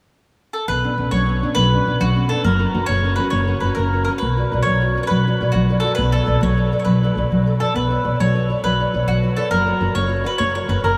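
Romantic and wistful, this Italian folk serenade in B minor sways in 6/8 at 136 BPM counted in dotted quarters, and it is cut from a longer piece. A picked mandolin carries the melody up front from 0.5 s, its double strings giving a warm, woody ring in a narrow span from F#4 to C#5. At 0.7 s a fingerpicked nylon-string guitar joins with a full-bodied, deep classical accompaniment, alongside a dark pizzicato upright bass on steel strings holding the low end from F#1 to B1. The harmony moves through Bmadd9, F#, Bm and Bm7 before the opening phrase returns at 7.8 s and starts again over Bmadd9 and F#. A huge, wet reverb places the trio in a vast, echoing space, letting the notes hang in the air.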